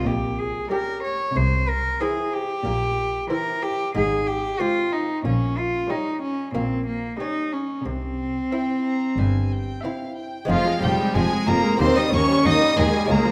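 A reedy solo cello sings up front across this driving, dramatic 92 BPM excerpt of a baroque-style concerto movement, with high period-style violins carrying a smooth-topped melody over a close second violin line, nasal violas and a delicate fingerpicked lute murmuring in the background, and a rich double bass section and distant cello section grounding the bass, all in a wet recital hall, as the harmony shifts toward F minor at 10.5 s.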